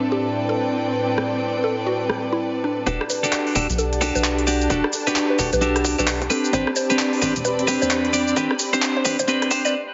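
UK garage in a two-step style at 131 BPM, this short cut from a longer piece has a skippy, late-night mood in E minor, with a swung sixteenth feel. From the opening, a breathy, warbling pad holds sustained chords with chorus and sidechain pumping, while a bright, twangy clean electric guitar sits up front with filtered, delayed stabs. Alongside them, a veiled, con sordino string section adds a bowed texture, and a woody, mallet-like synth pluck carries the melody through chorus and phaser. The garage kit arrives at 1.2 seconds with crisp hats, handclaps, rim click and shaker, and at 2.9 seconds a rubbery, bouncy square bass and a tight background kick join as the harmony moves from Am11 to Em11 and a build-up begins. A break lands at 9.7 seconds, and the whole mix carries a heavily compressed, radio-like sound with a moderate plate reverb.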